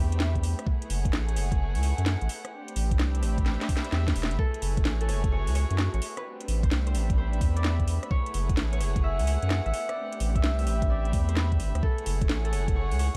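A thick, saturated sub bass sits up front throughout this moody, soulful two-step garage excerpt, its sine-like tone deep and sustained beneath a swung groove. A knocking electronic kick and a layered, tape-warm garage kit of cracking snare, rim clicks and metallic hi-hats drive the beat in studio reverb, with a drum fill at 3.5 seconds. Behind them, a dark chamber violin section holds woody, bowed chords with vibrato, while a second chamber string section adds a nasal, reedy gut-string texture with a smooth top, both pulsing under sidechain pumping. At 4.4 seconds a bright, ringing concert harp enters with a fingerpicked melody trailed by delay. The harmony rocks between Am11 and F#m11 inside a small-room ambience and a dark, warm production.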